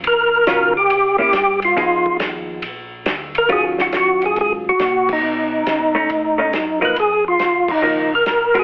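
A dark, round tonewheel organ bass and a smooth soul drum kit with a tight kick and dusky cymbals open this smoky, late-night soul jazz organ trio fragment, swinging in four. Almost at once a fat, lightly overdriven lead organ steps up front with a solo, its percussive third-harmonic attack, key click, chorus vibrato and slow rotary speaker giving the melody a gritty shimmer. A clean, picked hollow-body electric guitar joins at 0.5 seconds as a dark, compressed accompaniment beneath the organ lines. The harmony moves from Ebm9 through C7b9 and Fm7b5 before settling into Ebm9, B9 and Db69, with the band hitting accents at 5.0 and 7.6 seconds. A moderate club reverb surrounds the trio, and the whole mix is heavily squeezed into a boxy, telephone-like radio tone.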